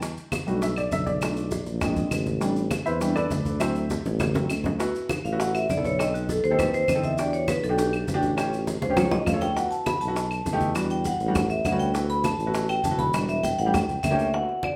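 A lively, sophisticated Afro-Cuban jazz groove at 201 BPM opens on a breathy tuba bass with scooped notes, low-tuned congas, tight bongos, grainy maracas and woody claves, as an intimate baby grand piano, its action noise audible, takes a short solo over rich extended chords. At 4.8 s the music settles into D major, and a metallic, ringing vibraphone, played with medium hard mallets and sitting up front, carries the melody as a solo from 5.2 s, with drum fills marking the turns. The band sounds as if playing live in one room, wrapped in a large studio reverb, and this clip is cut from a longer piece.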